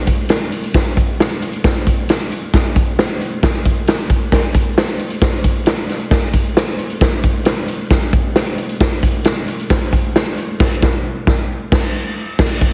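The recording has a heavily compressed, radio-style sound, squeezed by multiband compression and set in light reverb. This soul excerpt, cut from a longer piece, is carried entirely by a swinging big-band drum kit playing a straight 4/4 feel with a passionate, driving mood. The acoustic kit sits up front in a big, natural-sounding room, with crash cymbal, hi-hat, a medium-tuned snare and a punchy kick. The drums play from 0.1 seconds to 12.7 seconds. A band accent arrives at 10.6 seconds and carries through to the close of the section at 12.4 seconds.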